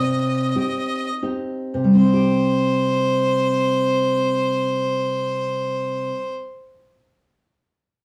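A small, reverberant room heard from a little way back frames this short, passionate and romantic Italian folk fragment in C minor and 3/4, swinging gently at 81-99 BPM and slowing down over the first 1.9 seconds, as an earthy solo fiddle with light vibrato sings the melody up front over a bright, fingerpicked nylon-string guitar with fresh strings, both playing from the start, the fiddle until about 6.3 seconds and the guitar until about 6.5 seconds.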